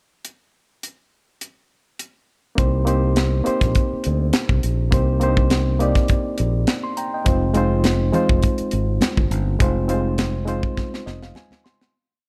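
A reedy, lightly overdriven electric piano sits up front in this silky, cinematic 1970s-style soul piece in C minor at 103 BPM, pushing drop-2 chords over Cm7 and then Fm7 and adding grace notes and short fills. A tight funk kit with a high-tuned snare and an airy, polished sound plays the pickup bar alone before a growly fingered bass enters at 2.6 seconds with a melodic line full of muted ghost notes and slides, and very quiet, close congas join at 7.3 seconds with a slap on two and open tones on four. The dark production and studio reverb frame the groove as it fades out from 9.6 seconds under closing fills from the drums and the electric piano.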